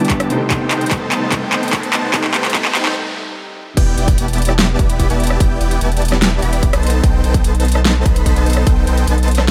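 A dark, intimate felt-muted upright piano with sidechain pumping and dub echo opens this emotional, lush half-time future bass build-up alongside a breathy, very quiet pad, a huge detuned supersaw riff under a low-pass filter sweep, a dubstep kit with metallic hats and a massive snare, a punchy electronic kick and a faint riser, before a break at 3.0 seconds gives way at 3.8 seconds to a drop where a deep, tube-saturated sub bass enters up front beneath the supersaw and drums.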